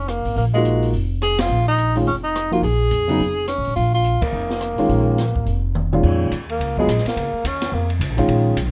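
A brisk swung 4/4 at 212 BPM drives this short modal jazz excerpt in Bb phrygian, its mood searching and hypnotic. The upright bass, plucked with a woody steel-string tone and sitting up front, opens at 0.0 s alongside the breathy tenor saxophone, whose mellow subtone carries vibrato and scooped notes while sounding distant and roomy. The open acoustic drum kit, with dark cymbals, a high-tuned snare and a boomy kick, joins almost at once, and the grand piano enters at 0.5 s with an intimate, long-sustaining sound in which its action noise is audible. The band hits accents together at 1.4 and 4.2 seconds over a Bb7 harmony with its third omitted, and a drum fill leads into a new section where the chord shifts to Bbm7 and the tenor takes a solo. The recording is close and detailed with little reverb, giving each instrument a present, natural character.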